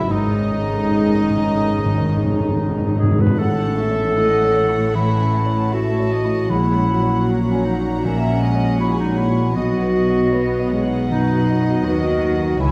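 Longing and sorrowful, this cinematic passage, cut from a longer piece, moves in a rubato 4/4 at about 72-80 BPM. Violin sections carry both the melody and a second line, bowed sul tasto with a soft attack and a pure, floating tone, while an up-front solo clarinet with a smooth top adds its own line throughout. For the opening 3.0 seconds, a mellow solo cor anglais with light vibrato offers another voice and a very quiet French horn section holds sustained chords, as timpani played with hard mallets give a close, dry fill in the background. Beneath them, a woody viola section and a concert grand piano with deep bass supply the accompaniment, and a distant cello section joins a dark, lush double bass section on the bass. The harmony moves from G#sus4 to A at 3.4 seconds, then through F#7/A# to B, set in a wet scoring-stage reverb.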